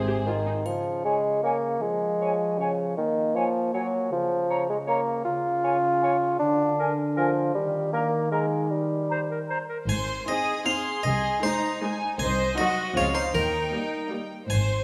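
A brief, soft-edged string chord opens this playful, whimsical film cue, cut from a longer piece. From the start, a mellow solo bassoon carries the accompaniment up front at 156 BPM in a straight 3/4, under sustained, smooth-topped chords from a French horn section and a very quiet triangle. A bright solo clarinet in classical style and a pure, distant flute ensemble add second lines, and the music moves from D-flat major to A-flat major at 5.3 s. At 9.9 s the strings return as a plucked, French-style harpsichord takes the melody up front. Around it, rich violin sections play sul tasto, a floating melody above an intimate second line with light vibrato, while a viola section fills the middle and a dark cello section and symphonic double basses hold the bass. A scoring-stage reverb wraps the ensemble in a roomy, mischievous, magical glow.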